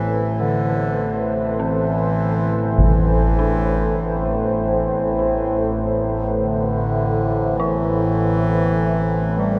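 In a straight 4/4, this desolate, dark ambient drone fragment sets an up-front, warm bass clarinet melody with tape echo over a resonant, overtone-sweeping drone and a deep, moody, detuned pad holding a single Amadd9 chord, while a barely audible bronze singing bowl rings softly beneath, an eerie, inharmonic synth bell adds very quiet arpeggios from 1.6 s, and a concert bass drum strikes once at 2.8 s, the whole fragment set in a huge reverb that suggests a vast, echoing space.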